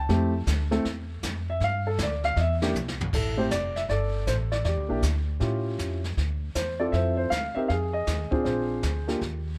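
A dark, mellow upright piano and a growly, pizzicato upright bass open this swinging jazz trio fragment, with the piano taking a solo turn up front through 3.1 seconds under a touch of plate reverb. The brushed drum kit sits distant and roomy in a small room, its dark cymbals, boomy kick and rolled-off top leading into a fill at 2.7 seconds before the harmony moves into richer extended chords. The mood is warm and swinging, with the piano's long sustain and the bass's woody steel-string tone close to the listener.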